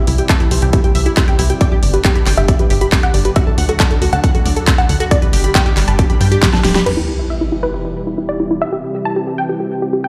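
A straight 4/4 pulse at 137 BPM drives this euphoric, uplifting trance excerpt in G major, where a punchy, overdriven electronic kick sits up front beneath a big-room kit with a huge snare, handclaps, hi-hat and crash, a tight, dark sequencer bass with tube saturation, a lush detuned unison pluck melody and a round, bright analog pluck arpeggio both carrying dub echo, and an evolving supersaw swell under a filter sweep, all pumping with sidechain until a drum fill at 6.4 seconds gives way to a sub drop impact at 6.9 seconds, leaving the pluck melody and supersaw chords moving from Em to C in a large, reverberant room.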